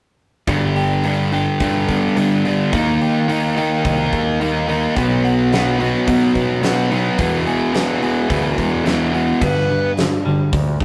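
A rough rehearsal-room recording with tube saturation and a moderate stone room reverb gives this short cut from a longer quiet-loud alternative rock piece a raw, enclosed feel. At 108 BPM in a straight 4/4 in G major, the mood is restless and cathartic, moving through G, Eb, B and E before landing on a G5 power chord as a new section begins at 9.4 seconds. Up front, a compressed fuzz guitar drives a bright, distorted picked riff, and it drops out at 9.9 seconds. Beneath it, a growling picked electric bass with overdrive adds a direct, amped edge, while a twangy clean guitar plays arpeggios through a phaser in the background. A big acoustic rock kit, with a fat snare, punchy kick, hi-hat and crash cymbal, fills the room, and the bass, clean guitar and drums carry on to the end at 10.8 seconds.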